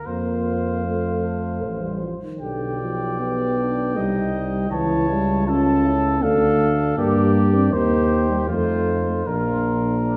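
A warm trumpet opens this brief excerpt from a classical brass quintet, joined at once by a dark trumpet carrying the heroic, grave melody above it, in 3/4 at 78 BPM with uneven beats. A distant, roomy euphonium and a mellow French horn with light vibrato, set in the background, fill out the accompaniment, while a clear tuba sits up front on the bass line. The harmony moves from F through Cm and Gm to settle on Bb at 9.3 seconds, all heard from further back in a reverberant recital hall.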